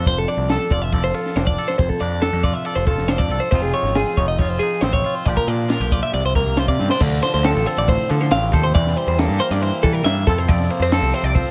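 Lightly reverberant and bright, this wistful math rock and midwest emo excerpt in F major moves at 138 BPM, with an up-front, clean, compressed twelve-string electric guitar picking arpeggios that carry a warbly pitch drift over a quieter, fingered, twangy electric guitar, while a growling overdriven picked bass and a compact cocktail drum kit with a high-tuned snare, punchy kick and a dark, rolled-off top drive the piece until a drum fill at 6.8 seconds opens a second section on Dm7.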